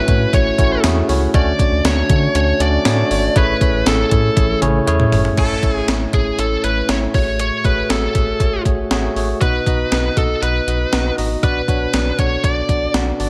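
A bluesy overdriven lead guitar, dark and distorted with delay, carries the melody up front from the start over a clean tine electric piano in this glossy, uplifting excerpt of 1980s-style pop at 119 BPM, moving from A6 and Dmaj7 through A, F#madd9/A and B to Bm. A rubbery, hollow square-wave bass with a nasal filter pluck and a clean 12-bit drum machine, thumpy and tape-toned with gated reverb across its kick, snare, toms, hi-hat, tambourine and crash, join at 0.1 seconds. A drum fill at 4.4 seconds leads into the second section at 5.4 seconds, all set in a light digital ambience.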